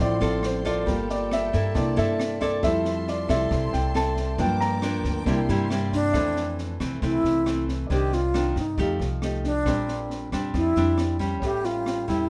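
An airy, close-miked alto flute with a soft attack and an unsteady tone carries the melody from 5.9 seconds, after the grand piano solos over the first 6.1 seconds. This is a sophisticated, breezy bossa nova excerpt in F major at 136 BPM, driven by a full-bodied, fingerpicked nylon-string guitar with audible finger squeak, a natural grand piano, a woody, dark pizzicato upright bass, and a small-room jazz kit with a boomy kick, rim clicks and a high-tuned snare. A lush, bowed string section with warm vibrato sits in the background until 6.1 seconds, and light reverb surrounds the group as rich chords such as Gm9, C13 and Bb69 pass by.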